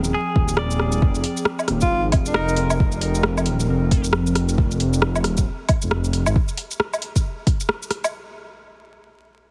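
Rainy and ghostly, this short future garage excerpt at 135 BPM in F dorian swings over a single Fm7 chord, with a rumbling detuned saw bass and deep electronic kick up front, a deep house kit of metallic hi-hats, rim click, shaker and woodblock, a clean picked semi-hollow guitar with delay and a nostalgic, warbling lo-fi pad in the background, both pumping to the sidechain, and a breathy alto saxophone slipping in with a brief vibrato phrase at 1.8 seconds, the mix sitting under vinyl crackle and a heavily compressed radio sound.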